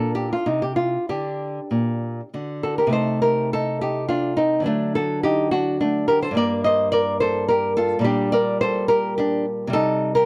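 The guitar is captured dry and close, with detailed microphones that put every note up front in a small, intimate space. This is a brief fragment of a classical, baroque-style dance in triple time, played by a lone nylon-string guitar whose fingerpicked tone is acoustic and dark. The mood is solemn yet flowing, and the rubato lets the pulse stretch and give throughout. After an opening phrase, a second passage begins at 2.9 seconds on a diminished harmony and moves through D and G minor colours before settling on a half-diminished chord near the close at 9.7 seconds. The line ranges from G2 up to Eb5, drawing on deep bass notes and a high upper register within a single instrument.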